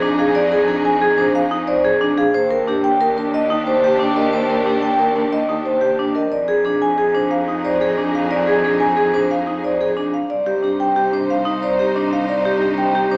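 This minimalist classical pattern music, cut from a longer piece, moves at 181 BPM in a straight 6/4 in F dorian, with a hypnotic, meditative mood. Two vibraphones played with medium mallets and the motor off sound together for the full 13.2 seconds. One carries the melody between G4 and Ab5 with a metallic, ringing tone, while the other, slightly louder and placed up front with a boxy small-room character, spins arpeggios between D4 and C5. Beneath them, a dark chamber string section holds bowed, woody sustained chords with vibrato in the same middle register, while a single close cello anchors the bass from C2 to F2 in a rich, focused voice. The harmony moves from Fm7 to Ebmaj7, returns to Fm7 at 6.3 seconds and reaches Cmadd9 at 10.3 seconds, heard through a moderate recital hall reverb and a small-speaker sound.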